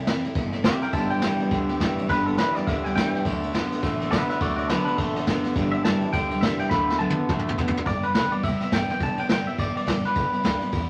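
Rockabilly at a swung 208 BPM in G major, rollicking and retro, with vinyl crackle over a moderate studio reverb in this clip from a longer piece. Up-front brushed drums with dark cymbals and a punchy kick join a woody, thumpy pizzicato upright bass and a bright, full-bodied picked acoustic guitar in the background, while a twangy, compressed clean electric guitar carries the melody through spring reverb. A slightly broken-up electric guitar riff sits up front from 0.9 to 7.8 seconds, and a drum fill at 6.7 seconds leads into a new section at 7.9 seconds.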